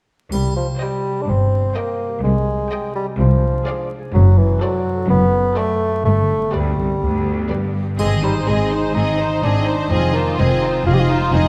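This cinematic film cue has a playful, whimsical, sneaky character, moving at 126 BPM in a straight 4/4 in C minor, and is cut from a longer piece. A mellow, up-front solo bassoon with a soft attack carries the accompaniment from 0.3 seconds. Beneath it sit a focused cello section and a rich double bass section, bowed with vibrato, and a thumb-plucked concert harp rings out arpeggios in the background. From 0.8 seconds, two violin sections enter, a distant one on the melody and a closer one on a second line, over a lush, smooth viola section in the background. A bright triangle sounds briefly at the start and again at 8.0 seconds. The harmony moves from Cm through Abmaj7/C, D7/F# and G to Ab and Fm7, all set in a wet scoring-stage reverb with a layer of vinyl crackle.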